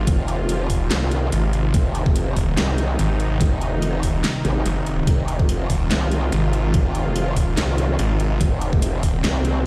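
Menacing and chaotic, this heavy wobble dubstep excerpt in F minor pounds along at 144 BPM in a half-time feel with swung sixteenths, as a snarling, distorted sawtooth bass and a growling, formant-filtered wobble bass sit up front over a knocking, tape-warm electronic kick, a dubstep kit of huge snare, metallic hats and handclaps, and a lush, detuned supersaw pad pumping under sidechain, all ringing through the stone-room reverb of a big sound system in a bare room.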